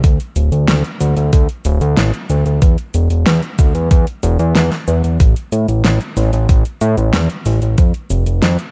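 Dark, dry production frames this nocturnal, nostalgic synthwave excerpt at 93 BPM in a straight 4/4. A fat, nasal analog bass of detuned sawtooth and square waves, saturated and up front, spans D1 to A2 with sidechain pumping, while an overdriven, thumpy sampler-style kick sits forward until 7.9 seconds. A layered electronic pop kit adds a fat snare, metallic hi-hats and cabasa with a tape-warm tone through 8.7 seconds.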